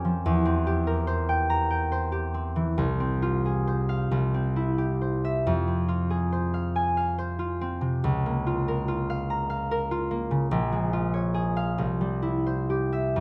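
A concert harp, fingerpicked and sitting up front, carries this solo classical piece, its warm, ringing strings spanning from a deep Bb1 to a high Bb5. The mood is gentle and mysterious, moving in a slow 6/8 at roughly 42 to 50 BPM by the dotted quarter, with a free, rubato feel that lets the phrases breathe. The harmony drifts from C7/E at 0.2 seconds through Fm/C, C and Fm, then moves into Bbm/Db and Bbm7 before settling on C at 11.8 seconds. Close, detailed microphones capture the acoustic instrument intimately, while a light reverb adds a soft halo around each note. This 13.2-second passage is cut from a longer work.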